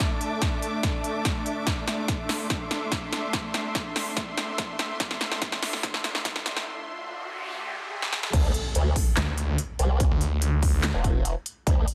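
A lush, bright supersaw pad with sidechain pumping and a low-pass filter sweep opens this aggressive, menacing heavy wobble dubstep excerpt in half-time, together from the first moment with a punchy layered electronic kick, a big-room dance kit with crisp hats, handclaps, crash and a soft-clipped snare, and a background string section with vibrato and portamento, all building through drum fills as an electronic riser and noise sweep rise behind them. After a break at 6.7 seconds, the drop lands at 8.3 seconds with an impact and an up-front formant-sweep wobble bass, detuned and chorused with overdrive, while a growling, saturated saw bass with a moving notch snarls in at 9.2 seconds. The dense, heavily limited master carries light reverb, and the tape-tinged drums sound re-recorded in a large room.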